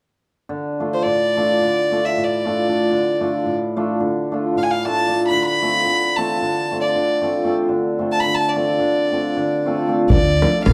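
Bittersweet yet fiery, this free-time Balkan wedding-band fragment in D minor opens with a shimmering, ringing hammered cimbalom at 0.5 seconds, joined by an up-front solo violin whose pure, floating, sul tasto melody carries a soft attack and distant plate reverb over the move from D minor to F over D, before a woody, thumpy pizzicato upright bass on gut strings and a deep, vintage, band-limited davul arrive together at 10.1 seconds, all set in a dark small-room ambience.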